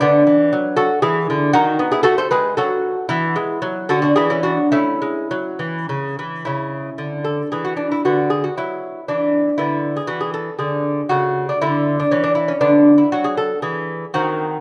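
In a flexible, rubato triple metre, this serene, dance-like baroque-style classical piece, cut from a longer work, features a solo lute, fingerpicked and delicate on doubled nylon strings with some octave-doubled courses, heard up front within a recital hall's moderate reverb as its opening phrase begins again at 6.5 seconds.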